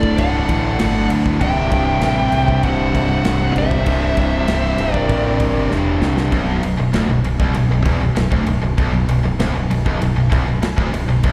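Dark and epic, this heavy metal passage is cut from a longer piece and heard as a live gig through the venue's PA, with small room ambience and recital hall reverb around it. A high-gain lead guitar carries the melody, distorted and shaded with slapback and tape echo, while a smooth, overdriven second lead sits behind it in a lower register; both play until 5.7 seconds. Underneath, three picked rhythm guitars drive the riff throughout: a bright, high-gain part with slapback echo, a sludgy overdriven one in the background, and a very quiet, double-tracked, compressed distorted guitar. A growling fingered bass sits up front, bright and overdriven with a direct, amped tone. The drum kit is airy and polished, with a punchy kick, a medium-tuned snare and ride cymbal, and a fill at 5.7 seconds leads into a new section at 6.3 seconds, where the harmony moves from D and C to B minor.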